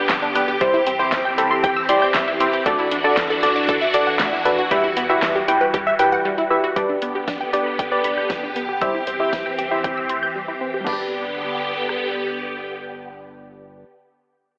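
Mellow, chorused analog keys open this wistful yet upbeat synth-pop excerpt alongside a swirling, phased string machine, lush detuned plucked arpeggios trailing tape echo, and a dark, rubbery square bass sitting far back, while a punchy deep house drum kit with fat snare, handclaps and gated reverb enters at 0.1 s and stops at 12.0 s, the mix squeezed into a telephone-like sound within a concert hall reverb.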